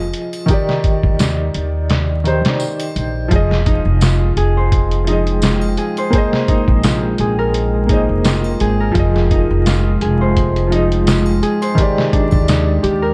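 A woody upright piano with tremolo and tape echo opens over a thumpy pizzicato upright bass and muffled, pitched-down sampler drums with 12-bit grit, while faint triangle and tambourine sit behind them in this hypnotic, dark trip hop excerpt at 85 BPM in F dorian. The harmony moves from Ebmaj7 through Fm7 and Bb9sus4 before returning to Ebmaj7. A ringing thumb-plucked Celtic harp adds delayed arpeggios from 3.7 seconds, and a deep, detuned ambient pad with chorus and reverb swells in at 4.0 seconds, all wrapped in a dry, dark production with vinyl crackle.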